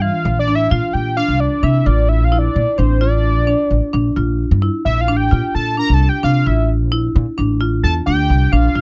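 This progressive instrumental moves at 130 BPM in an uneven 5/4 with a straight feel, driving and bright from its first beat, and it is tuned slightly flat with A4 at 437 Hz. Across its 8.8 seconds, cut from a longer piece, a fat analog synth lead carries the melody as a solo between C5 and Bb5. Its detuned sawtooth tone sits up front, with a sub octave, a filter sweep, vibrato and chorus. Beneath it, a marimba struck with hard mallets plays percussive arpeggios on rosewood bars from E3 to F4. An up-front upright bass, plucked pizzicato on steel strings, gives a growly, woody low end from A1 to C3 and stands loudest in the mix. The sound is dry and close, like a 1970s studio recording, with the harmony resting on D minor.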